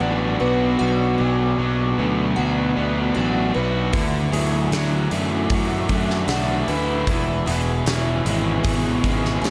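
Wistful and blissful, this shoegaze and dream-pop rock passage drifts through Bm, Dadd9 and E6 in a huge ambient reverb, as a deep, warbling pad, a shimmering, octave-doubled twelve-string acoustic guitar arpeggio and a distorted fuzz guitar riff sit in the background, while an up-front overdriven electric guitar with reverse reverb and a warm, overdriven fuzz bass carry the weight until a huge arena drum kit with a fat snare and punchy kick enters at 3.9 seconds.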